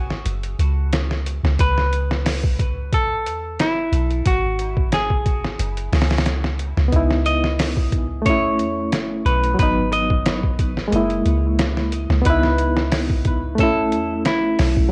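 A 90 BPM trip hop groove in 4/4 with a light 16th-note swing sets a brooding, hypnotic mood, built on a gritty, pitched-down sampler-style drum kit with a thumpy kick and medium-tuned snare, touched with studio reverb and cassette tape, over a deep, round 808-style bass. Up front, a clean, picked semi-hollow electric guitar carries the melody through cassette tape and dub echo, and at 6.9 s a barky, reedy electric piano joins with overdrive, harmonic tremolo and tape echo as the chords move through C#m7, B7sus4, G#m7 and F#7. This cut from a longer piece has the lo-fi character of a home cassette recording with light reverb and digital ambience.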